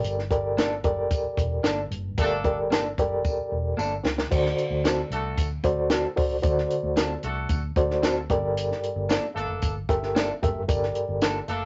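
A straight 4/4 groove at 113 BPM drives this danceable, uptempo 1960s-style soul fragment in D mixolydian, where a reedy, mellow electric piano with fast tremolo sits up front over a dark, foam-muted round bass and a dry cocktail drum kit with a high-tuned snare, tight kick and dark cymbals, while a jingly tambourine lurks in the background and a slightly broken-up, compressed guitar adds picked stabs almost from the start; a clear, vintage horn section with vibrato and octave doubling arrives at 2.2 s on a band accent, a drum fill at 3.2 s leads the harmony from Gmadd9 to D7 at 4.3 s, and light reverb with a softened top end lends the whole a cozy, period glow.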